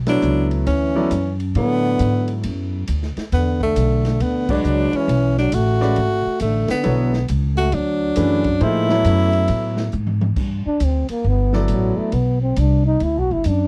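A 65% swing on the eighth notes drives this modal jazz fragment at 136 BPM in 4/4, with a hypnotic, spiritual pull that opens on a full-band accent and another at 4.4 s, all over a sustained E9sus4 in E mixolydian. The woody, pizzicato upright bass sits up front beside a close-miked, mellow tenor saxophone carrying the melody, while a breathy trombone traces a soft-attacked second line beneath it and a warm concert grand piano with deep bass fills in the accompaniment. An open jazz drum kit, dark-toned and smooth with a punchy kick and rolled-off top, colours the groove from a small room with ride, hi-hat, snare, toms and crash. The saxophone drops out at 9.9 s as the drums play a fill, and at 10.4 s the harmony shifts to Gmaj9 in G major for a whispered, intimate trombone solo full of vibrato and scooped notes. The sound is dry and close, in the manner of a 1970s studio session, and the piece is cut from a longer performance.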